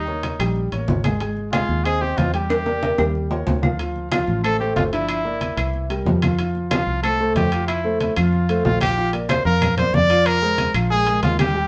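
A warm trumpet with light vibrato sits up front, carrying the melody in a jazz solo style across this lively, danceable Afro-Cuban jazz excerpt in F major at a brisk 185 BPM in straight 4/4. Beneath it, a fingered electric bass plays a dark, round, foam-muted line, while a grand piano with long sustain and audible action noise supplies intimate accompaniment. The percussion section blends bright, low-tuned congas struck with hard hands, ringing metal-shelled timbales heard close, and woody claves sitting in the background. A drum fill from 2.5 to 3.8 seconds drives the groove forward as the harmony moves through rich extended chords such as Em7b5, Eb9 and Dm9, settling on Fmaj7 before shifting to a new passage at 9.0 seconds that darkens toward Fm and closes on Fm11/Bb. The band plays live together in one room, framed by a moderate studio reverb that keeps the sound lively and natural.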